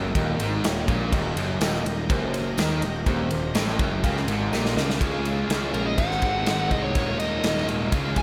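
Classic rock with a driving, swaggering stride, cut from a longer piece, where two overdriven electric guitars, one crunchy with slapback echo and one biting, play riffs in the background over a growly fuzz bass, a punchy big-room drum kit with bright cymbals, and very quiet sustained chords from a shouting tonewheel organ with key click and slow rotary speaker. A brilliant concert grand piano with slapback echo adds background accompaniment until 4.9 seconds, joined by a distant, jingly tambourine, before a drum fill at 4.5 seconds leads into a solo from a dark, smooth overdriven lead guitar that enters at 5.7 seconds. A lush hall reverb gives the whole an arena-sized sound.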